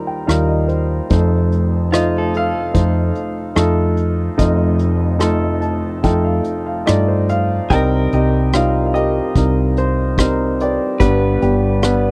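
Reflective and melancholic, this slow acoustic folk-pop ballad in C minor at 73 BPM opens on an up-front, natural-sounding baby grand piano carrying the melody with fills, joined at 0.3 seconds by a growly, hollow-body fretless electric bass and a brushed vintage drum kit with a punchy kick, rim click and rolled-off top, while a clean, compressed electric guitar recorded direct enters quietly at 1.9 seconds with tremolo-tinged arpeggios, all captured in a dry, close 1970s-style studio sound as the harmony moves from Ebadd9 and F7 to Cm7 and G.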